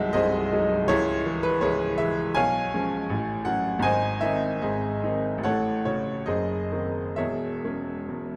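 A bright, woody upright piano sits up front with a brilliant, natural tone and long sustain, playing alone for the full 8.4 seconds of this stormy, passionate romantic character piece in C# minor. Cut from a longer work, it moves in a rubato 2/4 between 63 and 82 BPM, spanning B#0 to G#5 over chords that move from G#7/B# through C#m, F#m/A and G# before settling on C#m/E. A moderate scoring-stage reverb and a dark production frame the instrument, which is tuned to A4 = 439 Hz.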